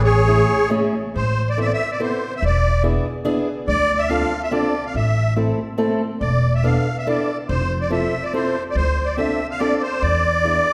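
Heard from further back in a scoring stage, this short passage from a longer musette waltz sits in a wet, lingering reverb. A reedy musette accordion carries the melody, its wet musette tuning lending a shimmering edge, while a pizzicato upright bass on gut strings supplies a woody, thumpy low end. A fingerpicked acoustic archtop guitar fills in the accompaniment with a boxy, warm tone, entering at 0.3 seconds, just after the accordion and bass begin together. The mood is bittersweet and nostalgic, moving in a straight three-beat sway. After a brief opening passage, a longer second section unfolds from 1.2 seconds through a chain of minor and seventh chords, arriving back on E7 near the end.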